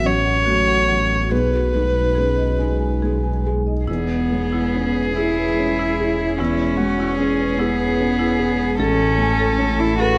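Heard through a moderate echo-chamber reverb with lossy compression artefacts, this short neoclassical excerpt for piano and strings drifts in a rubato 6/8 at around 46-50 BPM in E major, hopeful and intimate in mood. A sul tasto violin carries the melody with dark, woody vibrato, while a close, airy-bowed cello sings a second line just beneath it, over a thick-felted upright piano whose soft action noise is audible. Underneath, a very quiet detuned sawtooth pad holds sustained chords, a sine-and-triangle sub bass with an octave anchors the low end, and a marimba on rosewood bars plays smooth arpeggios through tape echo in the background, as the harmony moves to E6 at 3.9 seconds and Amaj7 at 8.8 seconds.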